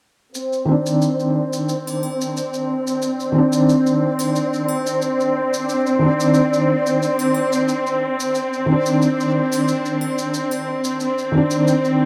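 Maracas and triangle open this cinematic, melancholic trip hop excerpt in C minor at 90 BPM, joined at 0.4 s by a bright, biting symphonic string section holding a Cmadd9 chord under a filter sweep, then by a dark, felt-muted upright piano with audible action noise, tremolo, 12-bit sampler grit and tape echo, while a very quiet reversed, granular, dreamy texture drifts in at 1.1 s, all in a rough home demo mix with light studio reverb.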